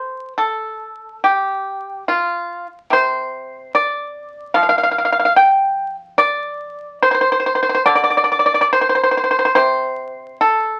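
Serene and flowing, this short piece of Chinese traditional music presents a solo pipa across 10.8 seconds cut from a longer work. The pulse sits near 71 BPM in 4/4, but the playing moves freely in rubato, with tuning set slightly below standard at A4 = 439 Hz. Plucked with fingerpicks, the pipa sounds acoustic, dry and percussive, placed up front and ranging from C3 to G5. A wet studio reverb surrounds the instrument, giving it a modest sense of space. The whole recording carries the character of a very old 78 rpm record, with vinyl crackle running beneath the strings.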